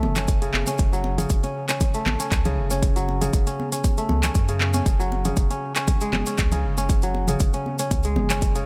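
A punchy, layered electronic kick sits up front on a lightly swung 4/4 groove alongside an overdriven afro-pop kit with metallic hi-hats and handclaps, damped high-tuned congas and grainy maracas tucked in the background, giving this driving afro house clip a warm lift. A round, deep analog bass with a nasal edge and a dark, sustained tone pumps against the kick, while a crisp, ringing fingerpicked kora plays arpeggios up front, pumping too and trailed by dub echo. The harmony rests on an F# minor chord before moving to C#5 over F# at 4.9 seconds, all set in a small room.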